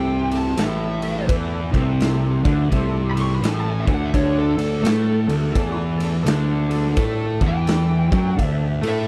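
A lead electric guitar through a small cranked amp carries the melody as a solo across the whole 9.1-second excerpt, its overdriven, picked tone riding high over a swaggering, gritty blend of blues rock power trio and southern rock at 85 BPM in 4/4, with a swung eighth-note feel. Beneath it, a double-tracked, hollow-body semi-hollow guitar plays an overdriven riff up front, while a fuzz-laden picked electric bass growls in the low register with a bright, direct-and-amped edge. A raw garage drum kit enters at 0.3 seconds with punchy kick, medium-tuned snare and ride cymbal, its saturated sound carrying a bright stone room that pumps and a rolled-off top. In the background, an overdriven tonewheel organ holds thick sustained chords marked by key click, third harmonic percussion and chorus vibrato from a stationary speaker. The harmony moves from A5 to D5 at 4.1 seconds, and the mix stays dry and close, with little reverb.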